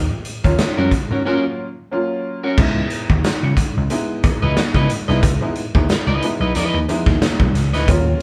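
A band playing live in one room, set in a moderate studio reverb, fills this short funk excerpt with a sly, hypnotic mood and a lightly swung sixteenth-note feel. The vintage slap bass opens the recording, growly and amped with tube saturation, before the raw garage drum kit arrives in a bright stone room, dark and smooth, with a punchy kick, a medium-tuned snare, hi-hat and crash, all sitting up front with a rolled-off top. A clear upright piano adds woody, slightly detuned stabs, while an electric guitar at the edge of break-up plays twangy, fingered accompaniment close in the mix. Very quiet, high-tuned congas ring softly underneath. A break runs from 1.3 to 2.6 seconds, and the harmony shifts from a rootless D#m7 to C#m9 at 2.6 seconds as a new section begins.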